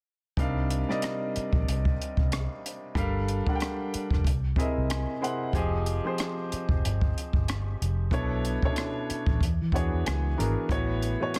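A dense, heavily limited modern master with studio reverb frames this sultry, soulful neo-soul R&B excerpt, cut from a longer piece and lightly swung on the sixteenths. An intimate, woody upright piano with audible action noise sits up front, moving through extended chords such as Cm11, C7alt and E13 and adding fills at 4.2 and 9.4 seconds, while a round, foam-muted vintage electric bass plays with a punchy, amped tone. A compact cocktail kit of hi-hat, kick and rim click sounds dark and rolled-off on top in a small room, with a punchy kick and soft clipping on the snare.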